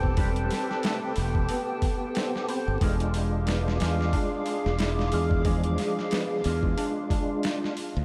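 A swung sixteenth-note groove from a gritty, overdriven sampler-style drum kit with a thumpy kick, locked together with a growly, punchy fingered electric bass, anchors this smoky, cinematic trip hop fragment, while a percussive tonewheel organ with key click and slow rotary speaker, a warbling, nostalgic tape-like pad and a felt-muted upright piano playing soft arpeggios in the background drift over Am9 moving to E7b9 at 2.8 seconds, the mix soaked in huge ambient reverb for a dreamy haze.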